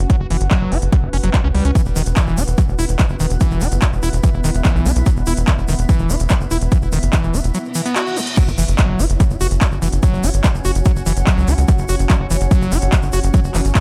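A driving, straight 145 BPM pulse from an overdriven, up-front kick and a layered techno kit of handclaps, smooth hi-hats and crash anchors this hypnotic psychedelic trance excerpt, where a tight, nasal sequencer bass with tube saturation pushes underneath a squelchy, resonant acid riff drenched in distortion, chorus, delay and sidechain pumping, a blurred granular cloud pad hovers behind, a grainy tube shaker joins at 1.8 seconds, and a very quiet reverse cymbal rises into an impact that marks the drop at 8.4 seconds.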